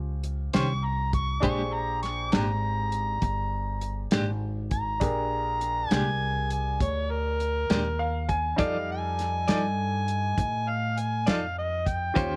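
Light reverb and a small-room ambience give this short cut from a longer piece a close, intimate sound. It is a swaggering, rollicking slow blues in 12/8 at 67 BPM with a straight feel, set in Bb mixolydian and moving through extended chords from Eb13 to Bb13 and on to F13. An overdriven, gritty, amplified harmonica carries the solo up front in a jazz style, full of tongue slaps and scooped notes. Beneath it, a dry, dark acoustic soul drum kit with a tight kick and a medium-tuned snare sits alongside a woody pizzicato upright bass. A clean, compressed electric guitar with tremolo adds picked, scooped accompaniment. A clear, present grand piano comps throughout and steps forward with a brief fill from 7.7 to 8.6 seconds.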